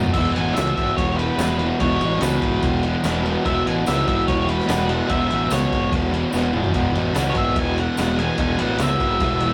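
Raw and rowdy, this garage rock excerpt charges along at 146 BPM in E major, driven by a bright, double-tracked fuzz guitar riff sitting up front over an overdriven fingered electric bass. A dark octave-fuzz lead guitar carries the melody from 0.1 seconds, while a crunchy breakbeat drum kit with a punchy kick, high-tuned snare and saturated, gritty tone with a rolled-off top breaks into a fill at 6.3 seconds, and a jingly tambourine rattles in the background. A moderate stone room reverb wraps it all in a rough rehearsal-room sound.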